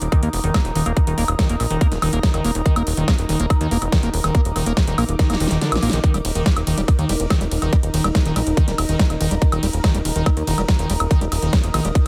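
A nasal, resonant drone with moving overtones and a plucky analog bass open this intense, alien psychedelic trance passage at 0.0 seconds, alongside a big-room dance drum kit and an ethereal, airy pad. A squelchy acid bass riff and a tight, up-front electronic kick join almost at once, driving a straight 4/4 pulse at 142 BPM. The punchy, funky sawtooth bass sits low and forward, while the acid line's filter sweep and digital delay give it a liquid, smooth edge. Sidechain pumping breathes through the drone, pad and acid bass, and the pad adds ensemble chorus and tremolo as a mellow layer in the background. The drum kit brings a huge snare, metallic hats, ride cymbal and woodblock, and its fill at 5.2 seconds briefly clears space when the kick drops out at 5.6 seconds. This cut from a longer piece sits in a digital ambience, with the drone's built-in reverb lending depth behind the forward bass and kick.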